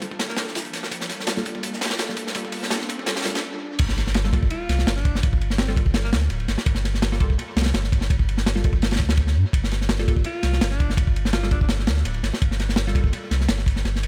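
Drum and bass with a raw, nostalgic jungle feel at 167 BPM in G minor, this excerpt opens on a Gm9 build-up where an airy, breathy pad, a muted phased dub chord stab under a filter sweep, a faint second breakbeat kit of hi-hat and snare, and a background riser and sub drop gather around a gritty, up-front acoustic breakbeat kit, then after a stop from 3.4 to 3.8 seconds the drop lands with an impact and a thick, saturated sub bass, while a clear alto saxophone with vibrato and subtone drifts in the background through dub echo in an echo-heavy studio reverb.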